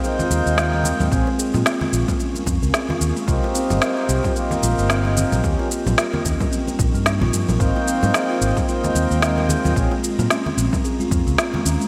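Organic downtempo at 111 BPM in Bb dorian, this warm, earthy excerpt is cut from a longer piece and moves with a swung sixteenth-note feel. A buzzing kalimba plays woody, ringing arpeggios with delay throughout, while a reedy, breathing pedal harmonium carries the accompaniment with sidechain pumping and delay until it stops at 9.9 seconds. Beneath them, a round, amped fretless electric bass with tube saturation anchors the low end, and a very quiet granular cloud pad enters at 0.6 seconds with dark, blurred, evolving sustained chords. The drums pair an overdriven electronic shaker, woody snare and congas sitting up front with a punchy, layered electronic kick that arrives at 1.1 seconds, while close, very quiet acoustic congas and bongos add bright detail. The chords cycle through Abmaj7, Bbm7, Cm7 and Eb7, and the bright 1980s-style digital production sets everything in a lush hall reverb.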